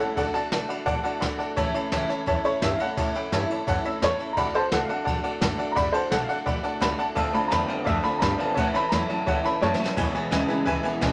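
A clear, woody upright piano carries the melody in this rowdy, rollicking rockabilly passage, soloing until about 10.3 seconds over a jangly, metallic tack piano, a full-bodied picked steel-string acoustic guitar, a thumpy pizzicato upright bass with gut strings, and a brushed drum kit with dark cymbals and a boomy kick. At 7.2 seconds a twangy, slightly broken-up electric guitar steps up front with a low riff through spring reverb, and the drums add a short fill near 9.6 seconds. Moderate club reverb frames the parts as this short cut from a longer piece ends on the E chord.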